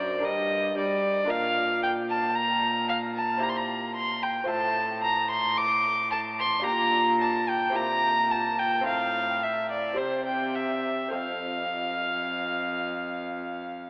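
Baroque-style classical chamber music, this sonata movement with continuo unfolds in a serene, flowing triple metre, its beats stretched and pulled by a gentle rubato. A single violin carries the melody in its upper register, up front with a rich, reedy voice and light vibrato. Beneath it, one bowed cello holds the bass line with a dark tone and a smooth top. Both bowed parts use a period-style gut-string sound. A delicate fingerpicked lute fills in the harmony on nylon double strings, some doubled at the octave, moving through chords such as Gm, Bb and C7/Bb before settling on F at 11.1 seconds. The whole passage sits in a vast, echoing cathedral reverb with a long, wet tail, filtered through an AM radio sound, and this short section is cut from a longer piece.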